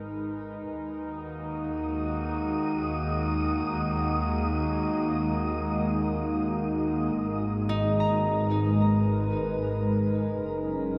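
Drifting in free time, this spacious, melancholic ambient excerpt in G# minor fades in on a warbly, nostalgic tape-like pad and a smooth bowed double bass section, joined at 1.5 seconds by a breathy, wind-like noise texture and moments later by a tense, string-like drone in the background, before a concert harp enters at 7.7 seconds with ringing fingerpicked arpeggios through diffuse delay and shimmer, all set in a dark, drenched, huge reverb.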